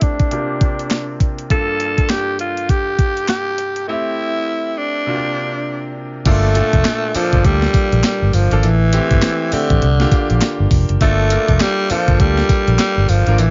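Swung new jack swing at 101 BPM in G dorian, this bouncy, slick R&B excerpt sets a crisp, overdriven 8-bit drum machine with thumpy kick, hi-hat, handclaps and tambourine under a breathy, raspy tenor saxophone melody and polished, brilliant grand piano chords (both low-pass filtered), through a filter sweep and a break from 3.9 s before a dark, foam-muted fingered bass enters up front at 6.3 s over Gm9, Am7 and C9sus4 changes, all in a dry, dull-topped mix.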